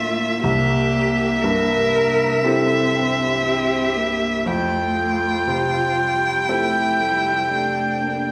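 Neoclassical piano and strings in a melancholic, reflective mood at a slow, rubato 59 BPM, this brief excerpt cut from a longer piece sets a single up-front violin singing the melody with vibrato, portamento and a soft attack over a distant cello's second line, a viola's bowed accompaniment and the mellow, intimate murmur of a felt-muted upright piano, all four playing throughout the 8.3 seconds as the harmony moves from C to Fadd9 in the lingering reverb of a recital hall.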